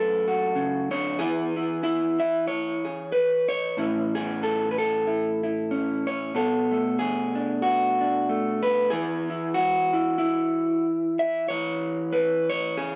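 An electric guitar played through a small old amp carries this short folk piece alone, its picked tone dark, slightly broken-up and lo-fi, sitting up front in the mix. Though the setting is solo fingerstyle folk, the amp gives the instrument a gritty, worn edge, and it spans from a low F#2 up to E5. The mood is melancholic and reflective, with a gentle swing in the 4/4 pulse. The harmony moves from F#m to E, then A and Bm7, before the chords fall away at 8.9 seconds. Close, detailed microphones and light reverb keep the sound intimate, and the passage is cut from a longer piece.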